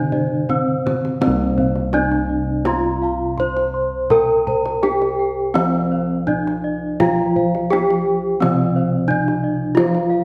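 A ceremonial, shimmering Javanese gamelan fragment in slendro at 84 BPM with uneven beats opens on an up-front bronze metallophone melody struck with wooden mallets, its paired tuning throwing off shimmering beats, over a round, vintage-toned bossed-gong bass, a dark, mellow low metallophone played with padded mallets that drops out at 1.2 seconds and returns at 7.0, high ringing metallophone arpeggios, bossed-gong arpeggios in the background and tight, hard-handed kendang, the whole set in a moderate stage reverb.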